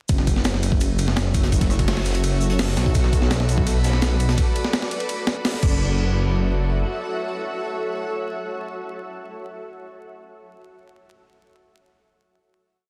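Drum and bass with a jungle edge, this raw, dark piece runs at 168 BPM in F# minor, opening on a drop where an up-front, heavily chopped sampler-style breakbeat with a thumpy kick and high-tuned snare sits over a thick, menacing detuned saw bass playing a dub-style line, while a crunchy, saturated looped break with edits murmurs in the background. A cloudy, evolving granular pad with built-in reverb holds bright sustained chords moving from F#m7 to Bm7, and a glassy texture of drifting overtones with chorus floats faintly between 3.5 and 5.8 seconds. The drums drop away before the final hit at 5.8 seconds, leaving the bass and the pad to ring out over a dense, heavily limited master flecked with vinyl crackle.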